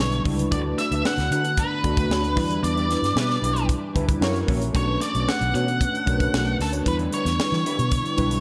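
Slick and urban, this polished 1980s jazz-funk pop excerpt moves at 114 BPM, with an up-front octave-fuzz lead guitar carrying the melody over a tight, dry funk drum kit with a high-tuned snare, a dark, round, foam-muted fingered bass, mellow tine electric piano with analog chorus and slapback echo, a background electric guitar riff, and a very quiet, crystalline glass pad, while a distant, roomy horn section adds a brief second line from 3.2 to 4.4 seconds during a band accent, all set in a lush hall reverb for a big arena sound.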